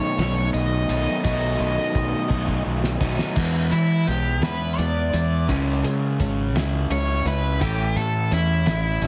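Indie rock in 6/8, this short, carefree excerpt has a jangly, easygoing mood despite its slow pulse. Three overdriven guitars sound together from the start: a bright lead carrying the melody through tape echo, a crunchy riffing guitar touched with subtle chorus and the same echo, and a darker, raw garage guitar adding a second picked riff. A growling fingered bass, bright with overdrive and sitting up front, joins at 0.2 seconds alongside a cloth-damped, thuddy drum kit with a fat snare, tight kick and dark, muffled cymbals from a small room. A drum fill at 2.3 seconds leads into the second section at 3.4 seconds, where the lead guitar takes a solo over a move from E through C#m to A. The whole mix has light reverb and a heavily compressed, radio-like sound.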